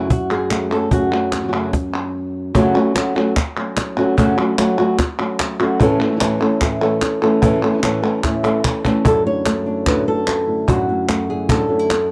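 A straight 4/4 pulse at 148 BPM drives this passionate, dramatic flamenco passage in F# minor, cut from a longer piece, with a snappy, dry cajon up front and crisp palmas hand claps set in a live room. A fingerpicked flamenco guitar carries the melody close and present, while a second, dark and boxy thumb-plucked guitar supplies stabs beneath it, finger squeak audible on both. The music halts briefly at 2.1 seconds and a drum fill arrives at 8.4 seconds, as the harmony moves from F#m to A before settling on Dadd9/F#, all in a close, 1970s-style studio sound with light reverb.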